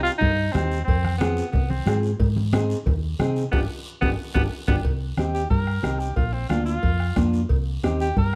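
Cumbia with a driving, passionate feel, this short excerpt moves at a brisk 181 BPM in straight 4/4 and settles into C minor from 4.9 seconds. A clear, vintage-toned alto saxophone carries the melody with a plate reverb sheen, while a fingerpicked nylon-string guitar in a classical vein supplies accompaniment and a round, punchy hollow-body electric bass anchors the low end. The percussion bed combines a soft-beaten bombo, damped, low-tuned congas played with soft hands, a raspy guiro, and ringing cowbell and timbales sitting in the background. Around 3.5 seconds the band hits a shared accent over a G7 chord, with a drum fill leading into the saxophone solo that starts at 4.9 seconds and moves over Cm, Bb and back to Cm. The production is dark, warm and lightly reverberant.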